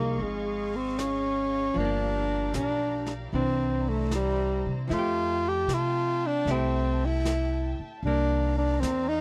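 A dry, close 1970s-style studio sound frames this romantic, late-night jazz ballad at 76 BPM, cut from a longer piece, with a swing feel on the eighth notes. Up front, a breathy tenor saxophone carries the mellow melody with subtone, scooped notes and light vibrato, over a woody, thumpy pizzicato upright bass on gut strings and a clean, picked hollow-body archtop guitar sitting in the background. A rich, smooth bowed string section sustains chords moving from Dbadd9 through Gm7, C9 and Fmaj9 to Cm11, while an airy, polished brushed drum kit joins at 0.2 s on snare and hi-hat.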